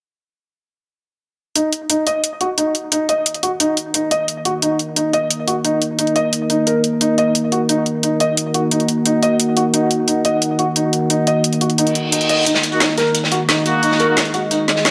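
A straight 4/4 groove at 176 BPM drives this excerpt of dark, technical drum and bass in Eb minor, with an aggressive, tense mood. From 1.6 seconds an overdriven electronic kit sits up front with a woody snare and bright hats, while a felt-muted upright piano plays soft, mellow arpeggios through 12-bit sampler grit, a low-pass filter and delay. At 4.0 seconds a deep, moody ambient pad enters with sustained chords built from detuned sawtooth and sine layers with a sub octave, slow attack and long release, thickened by chorus and its own reverb while a filter sweep moves across it. A reverse cymbal leads into 12.5 seconds, where a crunchy acoustic breakbeat kit joins with a saturated, rolled-off top and high-pass filtering on its hats, snare and room. Soon after, a clear, tight brass section fires classical-style stabs with delay. The whole mix sits in a moderate, lush hall reverb with a touch of small-room ambience.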